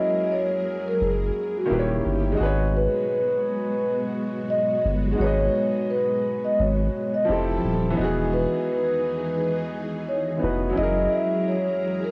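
A vibraphone played with soft mallets carries the melody in this reflective, melancholic hip hop excerpt, its metallic, ringing tone softened by a slow motor vibrato and the band-limited haze of cassette tape. Beneath it, a clear, woody upright piano sits up front with long sustain, while a string machine voiced as cellos lays down full-bodied sawtooth chords with a sub octave, soft attack and ensemble chorus. A deep, thick sine sub bass, roughened by transformer saturation, enters at 1.0 seconds and holds its fast-attack notes up front until 11.1 seconds. The groove moves at 86 BPM in 4/4 with a swung sixteenth-note feel in G# minor, drifting through F#9, D#7b9, G#m7, Fmaj7 and Emaj7 before returning to F#9. A moderate small room reverb and the home cassette recording give the whole excerpt a vintage character.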